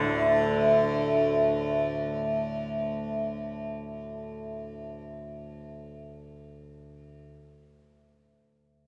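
Set in free time, this serene, meditative fragment of Indian classical music, cut from a longer piece, opens with a very quiet sitar sounding a round, buzzing note around D4, its sympathetic strings shimmering until 2.0 s. Up front from the very first moment, a bright, softly plucked tanpura drone spanning D2 to D3 sounds beneath it and then carries on alone until 7.2 s, its buzz glittering through the long, wet reverb of a cathedral-like hall.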